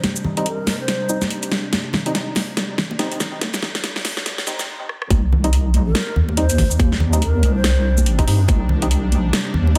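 A tense, string-like drone opens this dark, heavy half-time deep dubstep excerpt under a filter sweep, together with a drum kit with a huge snare and metallic hats and bright, close congas in the background, soon joined by a hollow organ stab with chorus and dub echo and a breathy low ney, all building through a drum fill to a stop at 4.7 seconds before the drop at 5.1 seconds brings in a tight electronic kick and a deep, wobbling bass up front, with the ney returning at 5.9 seconds.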